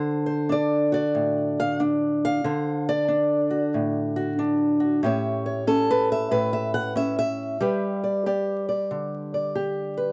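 A dry, close recording with a 1970s studio character, studio reverb and a layer of vinyl crackle opens this short fragment of a longer blues piece. A single fingerpicked acoustic guitar carries everything, its ladder-braced body giving a warm, boxy, woody tone coloured by old strings, placed up front in the mix. The mood is rollicking and gritty, with a swung 4/4 feel that keeps the playing loose and lively. The guitar ranges from a low A2 up to F#5 as it moves from D7 to A7 at 5.0 seconds and then onto G at 7.6 seconds. The whole passage lasts just over 10 seconds.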